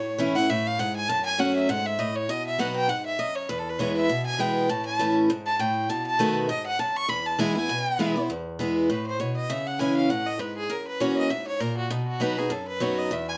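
This bluegrass excerpt moves with a virtuosic, driving energy and a lightly swung eighth-note feel, cut from a longer piece. A close, up-front fiddle carries the melody with a biting, nasal, earthy tone, an airy bow and light vibrato, sitting above a picked steel-string acoustic guitar. The guitar sits equally forward, its fresh strings giving a bright yet boxy parlour sound as it supplies the accompaniment. The fiddle takes a solo through the opening section, ending at 8.3 seconds, as the chords move through A, F#m, B and E before resolving via B7. A second section then turns toward C#m and F#7 before landing on B. Moderate studio reverb and a dark, warm production lend the pair a sense of space.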